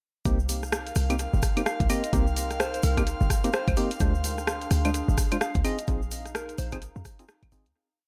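Bouncy and moody, this is a complete short two-step UK garage piece with a 60% shuffle on the sixteenths, built over a Cm7 that moves to Dm7b5 at 4.0 seconds and Bb7sus4 at 5.6 seconds. A knocking, layered electronic kick, re-recorded in a small room, drives a two-step pattern while a garage kit of skipping swung hi-hats, rim clicks and claves adds tape echo, and a grainy, mellow tube shaker plays hand-played sixteenths. A punchy, tight 808-style bass sits up front with tube saturation, carving out a skipping syncopated line. A hollow, wave-folded organ stab repeats a dark rhythmic chord riff, one shape moved in parallel, colored by chorus and analog delay, as an airy, breathy pad holds a high note and a nostalgic, lo-fi tape pad slowly shifts its chords, both pumping against the kick. From 1.7 seconds a round, keys-like FM lead offers short answering phrases with tape echo, and the echo-heavy mix fades out from 5.3 seconds to the end.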